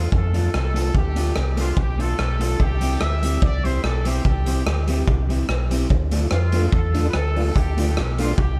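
Ska at 145 BPM in a straight 4/4, joyful and bouncy, this short cut moves from D minor to C and back while a clear, distant horn section carries the melody with light vibrato and tape echo. Beneath it, a raw garage drum kit with a punchy kick and gritty, saturated character sits up front beside a round, amped fingered bass, while a slightly broken-up electric guitar through a small old amp adds accompaniment colored by spring reverb and tape echo. From 6.1 seconds a mellow tonewheel organ slips in behind with stabs through chorus vibrato and a slow rotary speaker, all within a dark production that keeps reverb to a minimum.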